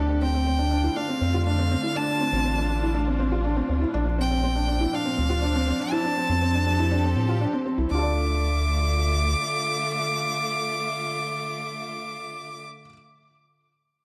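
A straight 4/4 pulse at 121 BPM drives this hypnotic, melancholic piano and strings electronica in D minor, cut from a longer piece that opens on a drop. A felt-muted upright piano repeats a soft, intimate riff with audible action noise, while a round, deep analog bass sits up front, its evolving square, sine and wave-folded tones giving it a fast attack and long sustain until it stops at 9.4 seconds. Beneath them, a rich chamber string section holds bowed, focused chords with vibrato across Dm7, Bb, Fmaj7 and back to Dm, shifting into a new section at 7.9 seconds. Above it all, a single clear violin carries a smooth, even melody, close and up front, from 0.2 seconds until 12.6 seconds. A moderate recital hall reverb blends with small room ambience, and lossy compression artefacts colour the sound.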